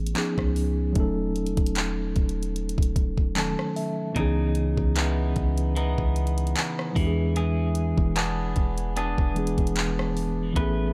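Dark digital ambience frames this moody, late-night contemporary R&B excerpt at 75 BPM with a slight sixteenth-note swing, where an up-front, mellow tine electric piano moves through chords such as C#9 and C#m9 and adds a fill at 3.0 seconds, a deep, boomy 808-style sine bass decays beneath an up-front electronic kit of knocking kick, rim click, handclaps and warm hats recorded in a small room, and a clean, twangy, picked electric guitar enters at 4.2 seconds with arpeggios through digital delay.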